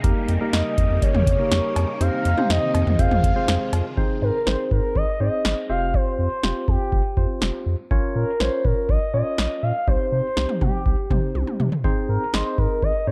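Light reverb and a digital ambience frame a dark, warm production in this melancholic, nocturnal synth-pop fragment at 122 BPM in F minor, cut from a longer piece. An electro analog drum machine sits up front with a deep kick, punchy snare, metallic hats, cowbell and toms, and it plays a short fill at 11.4 seconds. Underneath, a round analog bass with a fast attack and sustained sine-like tone holds the low end. A worn, slightly out-of-tune tine electric piano plays the accompaniment throughout, while a bright, swirling string machine with ensemble chorus and phaser holds sustained chords only until 4.0 seconds. From 0.5 seconds an expressive, smooth sawtooth lead with vibrato, portamento, chorus and slapback echo carries the melody up front as the harmony moves through Fm, Ab, Fsus2, Bbm and Cm.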